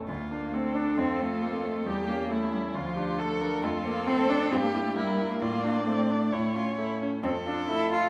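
Urgent and stormy, this quick classical-period movement for piano quartet, cut from a longer piece, sets a brilliant, up-front grand piano and a clear, even viola alongside a rich, close cello second line with expressive portamento, while a focused, smooth-topped violin with vibrato carries the melody from 1.0 s, the whole quartet heard in a wet recital hall reverb.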